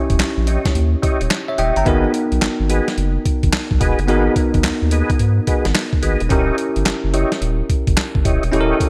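A bright 1980s-style digital production with a moderate plate reverb frames this confident, bouncy new jack swing cut, swinging in 4/4 and taken from a longer piece. Up front, a gritty, pitched-down sampler-style drum kit with a thumpy kick, medium-tuned snare, handclaps and hi-hat sits beside a deep, thick, saturated sine sub bass. Above them, a bell-like, clean tine electric piano carries the accompaniment from the start, while a clear tonewheel organ with chorus vibrato and a slow rotary speaker adds stabs from 0.5 seconds over a D#7b9 to G#m7 progression.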